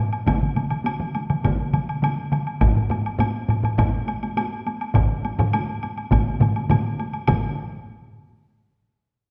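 Hard- and heavy-stick taiko drums drive this powerful Japanese traditional ensemble excerpt in straight 4/4, layering several taiko parts (some close, dry and up front, one vintage and band-limited) over a woody woodblock from the start, with a further taiko layer entering at 2.6 s, the whole mix bathed in recital-hall reverb and the warbling pitch drift of worn cassette tape.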